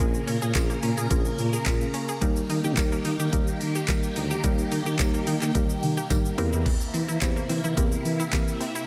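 A breathy tuba with scooped notes and vibrato carries the bass line in this bittersweet, energetic dance-pop excerpt at 108 BPM, pumping against a knocking, up-front R&B drum kit with handclaps, shaker and a drum fill at 5.5 seconds, while a woody, mallet-like synth pluck, a swirling phased string machine, a detuned unison pluck arpeggiating in the background and a faint jingly tambourine fill out the Bbm7, Eb and C7/E chords in light digital ambience.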